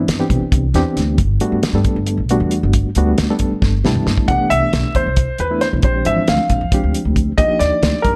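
A barky, reedy electric piano with light overdrive and fast tremolo opens this slick, soaring electric jazz fusion excerpt alongside a woody pizzicato upright bass and a dry, damped 70s drum kit with a fat snare and tight kick, all driving a brisk 271 BPM in 7/8. Drums and electric piano share a fill at 3.6 seconds. At 4.3 seconds an intimate, up-front concert grand piano takes the melody with slapback echo and audible action noise, over rich chords moving from Cmaj13 through Bb13 to Ebmaj9, in a dark, warm production with light studio reverb.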